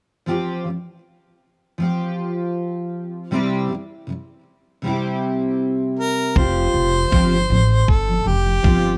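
Acoustic pop in F major at 79 BPM with a lightly swung, easy-going and sunny feel, this excerpt opens with a double-tracked, picked steel-string acoustic guitar, up front and fresh-stringed, moving from Fsus2 to C in a dry, close 1970s-style studio sound with a small room reverb. At 6.0 seconds a clear, jazz-style harmonica takes the melody with light vibrato and scooped notes, and at 6.4 seconds a woody, dark pizzicato upright bass on gut strings and a gritty, compressed, sampler-style electronic kick drum enter together as the chords return to Fsus2.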